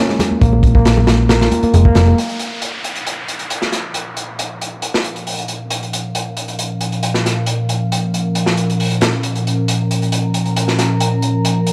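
A crunchy breakbeat drum kit drives this energetic, raw breakbeat excerpt, its saturated, gritty kit sitting up front with a tight kick, a medium-tuned snare and a rolled-off top, all filtered of low end and playing from the opening moments to the close. In the first two seconds an overdriven, reedy electric piano states a riff through a combo amp, roughened by tube saturation, old sampler grit and dub echo, while bright, very quiet congas and bongos and a round, dark hollow-body bass, picked and amped, fill out the groove before dropping away around 2.2 seconds. An electronic downlifter then carries the transition as the music moves into its second section. From 4.3 seconds a warbling, nostalgic pad enters with detuned sawtooth and triangle tones, slow-attack chords, chorus, reverb and sidechain pumping, with a filter sweep shaping it through the rest of the passage. The production is dark, warm and lightly reverberant, giving the whole a warm glow beneath the gritty drums.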